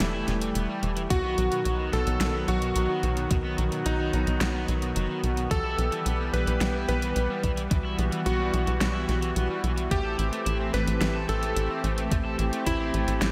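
A dreamy mix soaked in a lush hall reverb gives this moody, nocturnal synthwave excerpt a deep, nighttime haze. At 109 BPM in a straight 4/4 and set in E harmonic minor, it moves through Em, B, Em/B and Am7. A bright electric grand piano carries the melody with a clangy, vintage edge and a tape echo trailing its notes. Beneath it, a soft supersaw holds airy, detuned sustained chords that pump with the sidechain, alongside a tight sequencer bass whose punchy sawtooth and square-wave filter pluck drives up front with the same pumping motion. A cranked stack guitar plays an overdriven, picked riff, thickened by subtle chorus and tape echo. The pop drum kit adds a fat snare and warm hats with an overdriven grit, and an electronic kick drum brings a thumpy, sampler-style pulse from 1.1 to 12.8 seconds.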